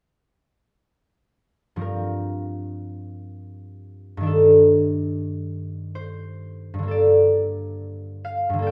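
Heard from further back in a wet recital hall with a 1.5-second reverb tail, this short excerpt of classical solo concert harp unfolds in a rubato 3/4, its ringing, fingerpicked, up-front tone spanning G2 to G5 as it moves from Gm7 through Ebmaj7#11/G to a Gmadd9 at 6.9 s, casting a mysterious, gentle mood.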